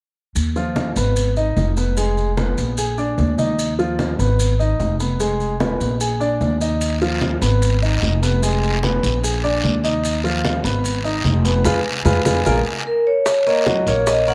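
Afro-Cuban jazz at 149 BPM with a sultry, fiery mood, cut from a longer piece: a woody pizzicato upright bass and a long-sustaining upright piano sit up front over low-tuned congas in the background and grainy, distant maracas, cycling through Ebsus2, Abm, Fdim and Bb7 in moderate spring reverb; a raspy, dry guiro joins at 6.8 s, the band hits an accent, a ringing, metallic vibraphone melody enters at 12.9 s, and tight, high-tuned bongos arrive at 13.3 s as the harmony moves to Ebm7.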